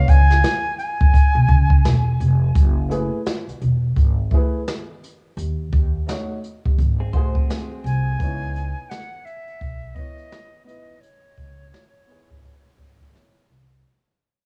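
Jazz-hop with a smoky, cool mood at 85 BPM in C# minor, swung on the sixteenths and cut from a longer piece that fades out over its full length. Up-front brushed drums with a boomy kick and 12-bit sampler grit and a growly, woody pizzicato upright bass with tube saturation carry the groove under a dark, boxy upright piano moving through chords like F#m11, G#7b9 and C#m9. A distant, airy flute with vibrato, cassette tape coloring and analog delay plays the melody at the start and returns at 7.9 seconds, overlapping the tail of a brief, quiet, compressed clean electric guitar line with its own delay that enters at 7.0 seconds, all set in a small room with a home-cassette feel.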